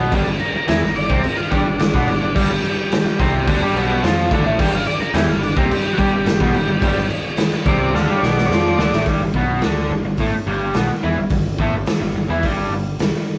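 This rowdy, swaggering garage rock clip opens with an overdriven, double-tracked electric guitar riff sitting up front, alongside a bright, direct picked electric bass, with a gritty, saturated acoustic drum kit coming in a moment later with a punchy kick, a medium-tuned snare, hi-hat and crash. The drums have a dark, rolled-off top and sit forward in the mix. From 0.4 seconds a vintage combo organ takes the lead with a buzzy, clean tone and heavy vibrato, carrying a solo through the first section. A drum fill from 7.9 seconds leads into a new section at 9.1 seconds, where the organ has dropped out and the guitar, bass and drums drive on together in a straight four. The whole thing has the rough feel of a rehearsal-room recording, with a moderate stone room reverb around the band.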